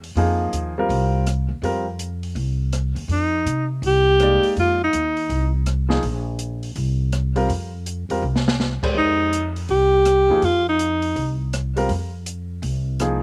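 This cool, hypnotic modal jazz excerpt opens with a woody, growly pizzicato upright bass and a dark, smooth acoustic drum kit, with a clear grand piano entering almost at once over an F7sus4 chord in F dorian. The tempo is a brisk 164 BPM in 4/4 with a swung eighth-note feel. The drums have a boomy kick, a medium-tuned snare, rim clicks, hi-hat and dusky cymbals with a rolled-off top, while the steel-strung bass sits up front. The piano briefly drops out, and at 3.1 seconds a present alto saxophone takes the solo melody in a narrow range, with a soft attack, vibrato and scooped notes touched by slapback echo, an effect the piano shares. A short drum fill arrives at 8.2 seconds before the saxophone returns at 9.0 seconds for another phrase. The sound is dry and open-air, with little reverb.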